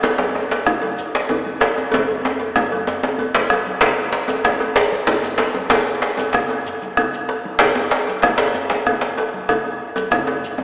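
West African traditional drum ensemble excerpt in a powerful, earthy 12/8, where a deep, up-front djembe sits over a second djembe with metal rattles, ringing medium-tuned congas, a round bombo, a metallic band-limited cowbell and a grainy, mellow shekere, with a drum fill from 1.9 to 3.8 seconds and the whole ensemble bathed in a cavernous church reverb and a lo-fi AM radio tone.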